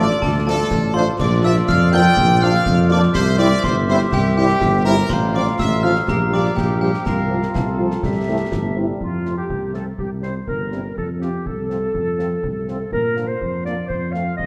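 A festive, proud military-style march for wind band in 2/4 at 123 BPM in F major, where clear trumpets carry the melody over a warm woodwind line and a sparkling, bell-like glockenspiel that drops out at 8.5 seconds, while dark, distant French horns sit in the background, very quiet mellow trombones hold sustained chords until 9.0 seconds, a mellow tuba anchors the bass up front, and close, dry snare drum, bass drum and clash cymbals with dark cymbals sit in the background, all in a roomy scoring-stage reverb that gives a cut from a longer piece a rich, dark finish.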